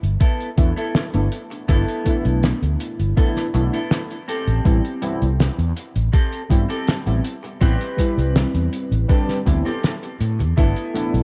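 A steady, straight 4/4 pulse at 81 BPM drives this hazy, melancholic vaporwave excerpt in A minor, built on a thumpy, overdriven electronic kick that sits up front with sampler grit. Beside it, a cloth-damped acoustic kit supplies hi-hat and a fat, saturated snare with a rolled-off top and the same gritty 12-bit texture. A round, punchy fretless electric bass moves between G1 and A2, dark and amped, while a clean, picked electric guitar plays a riff from 0.2 seconds, softened by subtle chorus and tape echo. Warbly lo-fi synth keys enter at 0.6 seconds with a nostalgic, detuned blend of triangle, sawtooth and square waves, a sub octave and ring modulation, their fast attack decaying into a mellow wash of chorus and tape echo. The harmony rests on G69, shifts to Am7 at 4.3 seconds and returns to G69, all set in a small, lightly reverberant room with an echo-heavy, cassette-tinged sound.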